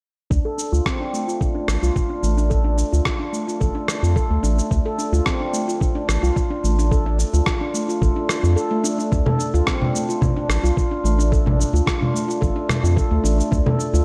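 A gently swung 4/4 groove at 109 BPM anchors this mystical, hypnotic piece of organic downtempo in D minor pentatonic, cut from a longer piece and resting on a D minor chord. A gritty, thumpy electronic kick and a compressed layer of shaker, rim click and congas, both with a sampler-style, tape-warm character and re-recorded in a large room, carry the beat from 0.3 seconds, the kick dropping out at 13.6 seconds. Underneath, a round, deep analog bass built from square and sine tones sits up front with a fast attack and sustained notes, pumping against the sidechain. Up front as well, a ringing, meditative handpan plays arpeggios through a low-pass filter and tape echo, its vintage, band-limited tone softening the top end. Both the bass and the handpan carry a filter sweep until 9.1 seconds, where a second section begins and runs to the end. A moderate lush hall reverb and digital ambience wrap the dark production in a dim, enveloping space.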